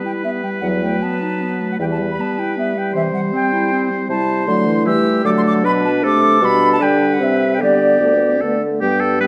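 Set in a reverberant recital hall with a softened top end, this spirited, lively excerpt from a quick classical-period wind quintet movement in E minor moves at 154 BPM in 3/4 with a rubato feel, as an airy, crisp-edged silver flute carries the distant melody above a punchy oboe with vibrato on the second line, a warm clarinet and a soft-attacked French horn filling the accompaniment, and a mellow bassoon entering on the bass at 0.6 s.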